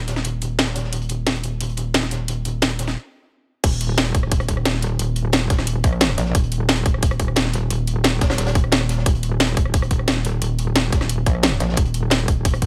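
Dark technical drum and bass at 177 BPM with an aggressive, futuristic mood, built on a metallic, wobbling FM bass, distorted and chorused with sidechain pumping up front, over an overdriven electronic kit with a cracking snare, bright hats, rim click, shaker and crash, a gritty, saturated breakbeat layer with a high-tuned snare sitting in the background in a small room, and a tight, overdriven kick that lands with the drop at 3.6 seconds after a brief stop.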